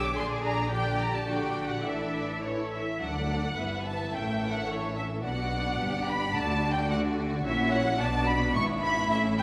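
In a straight 2/4 pulse at 108 BPM, this spirited, lively classical-period movement for string orchestra in D major sets a rich, focused, up-front violin melody over lush second violins, smooth, even violas, a cello section sitting in the background and expressive double basses, every section bowed with vibrato inside a wet concert hall reverb with a 1.9-second tail, as the passage moves from its opening phrase into a second section at 3.0 s.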